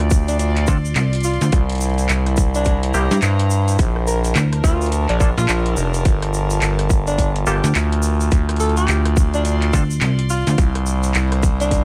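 Glitch hop at 106 BPM in 4/4 with a swung sixteenth feel, this gritty, funky cut moves through Dm7, C7, Bbmaj7 and Gm9 before circling back. Two basses sit up front: a saturated, aggressive synth bass built from square, sawtooth and sine tones with oscillator sync, a filter pluck and a moving notch, and a snappy FM bass with a metallic attack that joins at 0.7 seconds. A tight, layered electronic kick leads the percussion, backed by a small-room drum kit of handclaps, rim clicks and metallic hats, plus a grainy, compressed tube shaker. A mellow tenor saxophone carries the jazz-style solo melody with light vibrato and scooped notes, sounding distant and roomy through 12-bit sampler grit and delay. Stringy clav stabs played through a combo amp, pumping and echoing, drop out at 9.8 seconds, while a soft, floating chamber string section bowed sul tasto pumps in the background. The mix is dry, dusted with vinyl crackle, and the passage is cut from a longer piece.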